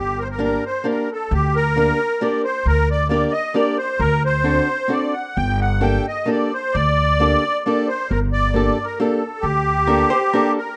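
A reedy, shimmering musette accordion carries the melody from the start over thumpy pizzicato upright bass on gut strings, and a boxy, fingerpicked ladder-braced acoustic guitar on old strings joins at 0.4 s in this whirling, bittersweet musette waltz in 3/4 at 132 BPM, played with rubato in G harmonic minor. The harmony moves from Gm through Gm/D and D7 to Gmadd9, with plate reverb on the accordion, acoustic guitar and archtop inside a moderate studio room. At 9.9 s a clean, hollow-body archtop guitar adds a brief, dark electric second line before this rough home demo, cut from a longer piece, ends.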